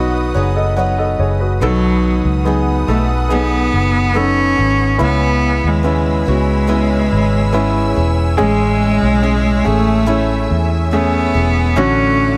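Hopeful and heartfelt, this pop ballad excerpt moves at 71 BPM in a straight 4/4, with a clear concert grand piano carrying the accompaniment over a dark, round, foam-muted vintage electric bass sitting up front, while a lush studio string section holds sustained chords and a picked steel-string acoustic guitar plays arpeggios in the background. At 1.6 seconds a bright, biting solo cello enters with an intense, vibrato-rich bowed melody. The chords move from B through C#m7 and Amaj7 to Dmaj7/A, all in a light, small-room reverb.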